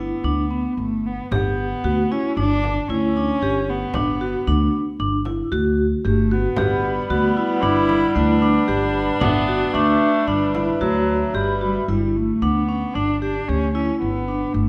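A moderate recital-hall reverb surrounds this hopeful, shimmering stretch of contemporary chamber music, cut from a longer work and set in an uneven five-beat meter with a straight feel. A single bowed cello carries the melody up front with a nasal, boxy, smooth tone and steady vibrato, beside a woody pizzicato upright bass. A close-miked vibraphone with medium mallets plays ringing, metallic arpeggios coloured by a fast motor vibrato. A deep, large frame drum sits in the background from 1.3 s, as the harmony opens from G to Gmaj7. At 6.5 s a dark, breathing pedal harmonium adds reedy sustained chords, and just after, at 6.6 s, a punchy, vintage-toned clarinet with light vibrato joins on a jazz-style second line. Both have stopped by the time the opening material returns at 11.9 s, where the chord settles back on G.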